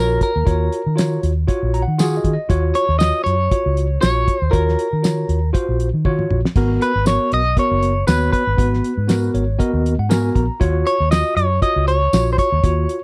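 A straight-eighth soul blues groove with a light sixteenth-note swing rides on a cloth-damped, thuddy drum kit with a fat snare, tight kick and dark cymbals, which slips in a brief fill at 6.0 seconds, beside a round, foam-muted vintage fingered electric bass. Up front, an electric guitar at the edge of break-up carries a smoky, soulful melody with a twangy, slightly broken-up tone and harmonic tremolo. A clean tine electric piano, heard through its built-in speakers, accompanies and adds fills at 1.5 and 9.1 seconds, all within a dry, close 1970s-style studio sound and small room ambience, cut from a longer piece.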